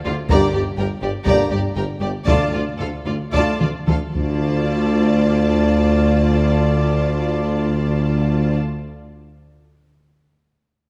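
Lush, vibrato-rich violins and violas, joined by bowed cellos, open this dark, epic orchestral film cue in D minor, grounded by intense double basses and a tuba in the background. Mellow horns, quiet trombones and tight trumpet stabs join at 0.3 s alongside heavy, vintage-toned taiko drums, over a Gm to Dm progression in 4/4 at 107-127 BPM that slows through the opening section. A taiko fill leads into the second section at 4.4 s, the drums drop out at 5.2 s, and a wet scoring-stage reverb gives the ensemble a distant, roomy depth.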